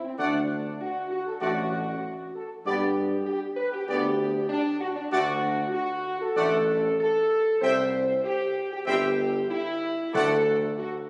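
A mellow, smooth-topped French horn section opens this triumphant, solemn classical fanfare in D major at 96 BPM, joined almost at once by a bright trumpet melody, clear trombone chords with light vibrato sitting in the background, and a warm, distant tuba bass moving through D, G, D and C, before round, soft-mallet timpani enter very quietly at 10.1 seconds on the closing D chord, all heard through a wet stage reverb in a phone recording made in the room, cut from a longer piece.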